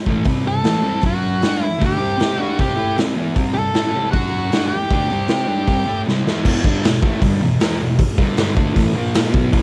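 Garage rock with a swaggering, menacing strut at 155 BPM, this excerpt sets a double-tracked, dark fuzz guitar riff against a raw drum kit with a punchy kick, medium-tuned snare, hi-hat and crash ringing in a bright stone room that pumps. An octave-fuzz lead guitar, equally distorted and picked, carries a short melody up front until 6.0 seconds, and a drum fill at 6.1 seconds tips the piece into a new section that opens on E minor and climbs through power chords to B5. The drums sound saturated and gritty with a rolled-off top, while cassette-tape grit colours the guitars and kit alike in a home-recorded, reverb-washed sound.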